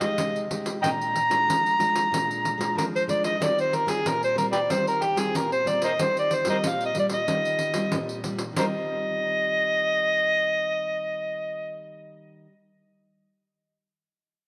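Gritty, overdriven harmonica leads from the first moment in this festive, joyful samba and choro excerpt at 93 BPM in Eb major, playing an up-front jazz-style solo with tongue slaps, scooped notes and light vibrato through tape echo, over fingerpicked classical nylon-string guitar with fresh strings and audible finger squeak moving through Fm9, Bb7 and Eb69, and a jingly, soft-handed pandeiro that drops out at 8.7 seconds, heard in a moderate echo-chamber reverb as the harmonica ends at 11.9 seconds and the guitar carries on to 12.6 seconds.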